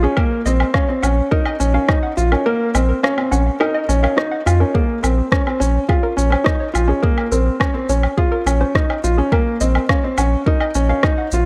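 Intimate and hypnotic, this piano and strings electronica excerpt at 105 BPM in 4/4 centres on an up-front, felt-muted upright piano riff with audible action noise and digital delay over a round sine sub bass with sidechain pumping. A warbly, lo-fi, detuned pluck plays arpeggios in the background through chorus, sidechain pumping and digital delay. An electronic woodblock, shaker and rim click layer sits beside a deep electronic kick that drops out from 2.5 to 4.7 seconds, while the chords move from Ebsus2/Bb through Bbmadd9 to Eb5/Bb under light reverb.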